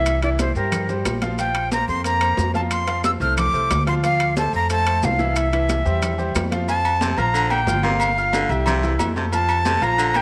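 A breathy, bright jazz flute leads this sunny, festive salsa excerpt at 181 BPM in F major, its crisp, chiffy attack and vibrato up front over a brilliant upright piano and a thumpy, gut-strung pizzicato upright bass. Ringing high-tuned congas, metal-shelled timbales and agogo bells, and grainy maracas sit in the background, joined by very quiet woody claves, all in a small, lightly reverberant room. At 7.0 seconds a raspy, gritty baritone saxophone enters with a second line as the harmony moves through Gm7 and C back to F.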